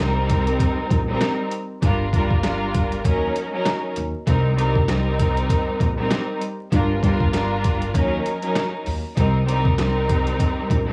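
Moody and tough, this short cut of a swung boom-bap hip-hop track opens on a clear, focused bowed string section with vibrato, filtered and tape-saturated, cycling through minor-seventh chords over a woody, growly pizzicato upright bass. At 0.3 s a gritty, pitched-down sampler-style drum kit joins with a thumpy kick, a medium-tuned snare and hi-hat, compressed and carrying a cassette-tape warmth. The dry mix has the feel of a home cassette recording, with vinyl crackle and studio ambience around it.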